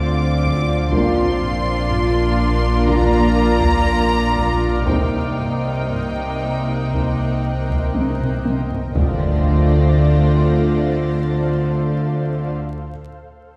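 This ominous, mysterious fragment of a suspense film score opens at 60 BPM in D phrygian with the full string body already sounding: dark, intimate violins carry the melody with light vibrato and a sul tasto touch, while a floating symphonic violin section traces a second line beneath. Dark violas fill the accompaniment, and the low end is anchored by woody, bowed double basses, a pure-toned cello section and a deep sine-and-triangle sub bass drone, with a very quiet, blurred granular cloud pad and a high, background violin texture hovering above. Distant taiko struck with hard sticks enters at 0.4 s, and mellow French horns and very quiet trombones add sustained chords from 0.9 s as the harmony moves from Dm7 through Bb and Cm7. A drum fill leads into a second section at 9.0 s, where the chords return to Dm7 and a very quiet electronic impact sounds out. The mix is heard from further back in a reverberant scoring stage, tinged with vinyl crackle.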